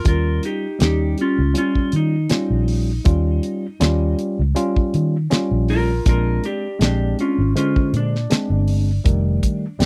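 Riding a straight-eighth 4/4 groove at 80 BPM with a slight sixteenth-note swing, this gritty, laid-back soul blues fragment sets a dark, clean lap steel melody with slapback echo over a worn, slightly out-of-tune, lightly overdriven tine electric piano through a combo amp, a round, punchy foam-muted fingered bass and a damped 70s kit with a fat snare and tight kick, all captured in a dry, close 1970s-style studio sound as the chords move from Eb7 to Bb7 at 6.1 seconds and F7 at 9.1 seconds.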